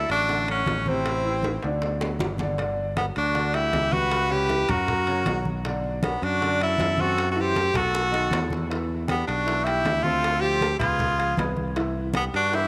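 Set in a moderate echo-chamber reverb, this sunny, sophisticated Afro-Cuban jazz passage puts a punchy, forceful tenor saxophone with vibrato up front on the melody, joined by a breathy, crisp-attacked metal flute on a second line, while a woody vintage upright piano comps in the background over a bright, direct fingered electric bass, low-tuned congas, distant tight bongos and very quiet ringing timbales, with drum fills at 1.4 and 7.8 seconds.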